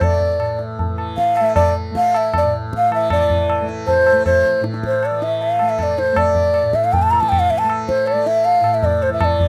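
A breathy, hollow bamboo bansuri sings the melody up front with vibrato and tongued notes over a softly plucked, buzzing, shimmering tanpura drone and close, dry, high-tuned tabla, giving this solemn, meditative Hindustani classical fragment a straight 4/4 feel in a rough home demo mix with light reverb, as it moves into a new section at 3.1 seconds.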